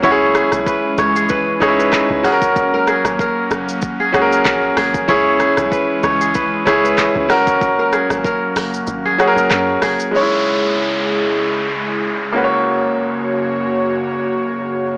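A 95 BPM afrobeats groove in 4/4, with a gentle swing on the sixteenths, drives this smooth, mellow passage cut from a longer piece, set in C# dorian and moving between C#m and F#. An electronic afro-pop kit supplies a deep kick, hi-hat, handclaps, rim click and shaker, while a round, dark log drum bass with a fast, decaying attack sits low underneath; the kick drops out at 8.9 seconds. Up front, a brilliant grand piano carries the accompaniment with long sustain, and a fingerpicked kora plays a ringing, crisp riff through a digital delay until 11.2 seconds. Beneath them, an airy, breathy pad with chorus holds sustained chords, its detuned, warbling vintage tone arriving with a slow attack and a long release. The kit and bass stop as an electronic downlifter enters at 10.1 seconds, leaving the piano and pad to carry on. The whole recording has a blown-out, overdriven, small-speaker character with light reverb.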